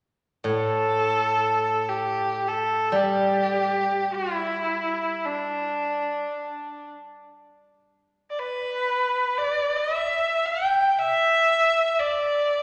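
A single bowed erhu carries the melody from 0.5 seconds to the end at 12.6 seconds, its clear, smooth tone shaped by vibrato and portamento in this pastoral, graceful passage of Chinese traditional chamber music in free time and G gong mode. Beneath it, an acoustic steel-string zither played with fingerpicks adds a ringing, silvery accompaniment in its low register before falling away at 6.2 seconds. The pair sits in the lush reverb of a scoring stage, and the clip is cut from a longer piece.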